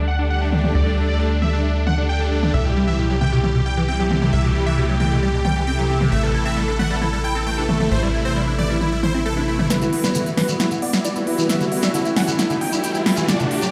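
A straight 4/4 pulse at 134 BPM drives this bittersweet, emotional uplifting trance cut in E minor, with a punchy, overdriven big-room dance kit of crisp hats, snare and toms under a tight, sawtooth sequencer bass that plays until 9.7 seconds. Huge, detuned supersaw chords carry the melody over a lush, phased supersaw pad, while a squelchy, resonant liquid acid bass spins chorused, delayed arpeggios, all washed in a hall reverb that sounds as if played through a big system in a bare stone room. At 9.7 seconds a build-up begins with a drum fill, a filter sweep on the supersaws and a grainy, mellow shekere, and a background riser joins at 11.1 seconds.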